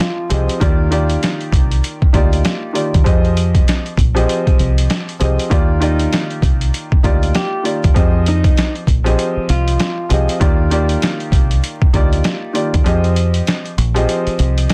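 A soulful boom-bap hip-hop excerpt at 98 BPM in Eb major opens with a dark, mellow grand piano carrying a vintage cassette-tape tint, gritty pitched-down sampler drums with a thumpy kick, and a brief fingerpicked nylon-string guitar figure, with a round, punchy dub bass following a moment later. The small guitar melody, complete with finger squeak, returns from 5.8 to 10.4 seconds through a digital delay, while the chords sway between Fm7 and Ebmaj7 over a swung 16th-note feel. The dense, heavily limited mix sits dry under vinyl crackle, and the kick drops out at 12.9 seconds.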